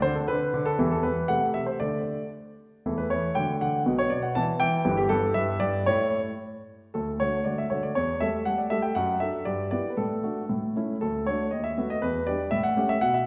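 A polished grand piano sits up front in a wet scoring-stage reverb, its present tone carrying a 1.6-second tail. This graceful, playful classical-period sonatina in 2/4 is played solo with a rubato feel, spanning G1 to A5 and moving through chords such as Em, A and D, with a new section beginning at 6.9 seconds. Cut from a longer piece, the passage reaches an A7 chord before it breaks off at 13.3 seconds.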